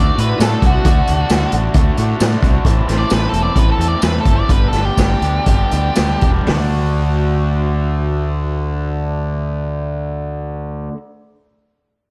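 Opening at once on a dark, fuzzed-out lead guitar solo over a bright, picked, overdriven garage guitar riff and a growly, up-front fingered bass, this jangly, carefree indie rock excerpt in D mixolydian moves in straight 4/4 at 113-133 BPM through D, Am and G, with a gritty garage drum kit of boomy kick, snare, hi-hat, toms and tambourine joining at 0.2 s and the pace slowing from 2.7 s before lead and drums drop out around 6.5 s, leaving riff and bass to return to D in a small, shadowy room.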